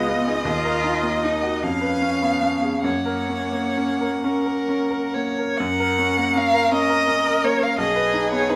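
In a rubato 6/8 at a slow 42-58 BPM counted in dotted quarters, this tender, lyrical classical movement for piano quartet in F# major unfolds as a short cut from a longer piece, with all four players sounding together throughout its 8.6 seconds. A focused, vibrato-rich violin carries the melody up front, while a second violin adds a smooth, even line and a cello sings its own line in the background. The bright baby grand piano supplies brilliant accompaniment with long sustain, moving from D#m through C#7/E# to F# and on to G#m/B after a new section begins at 5.6 seconds, all set in a moderate, large studio reverb.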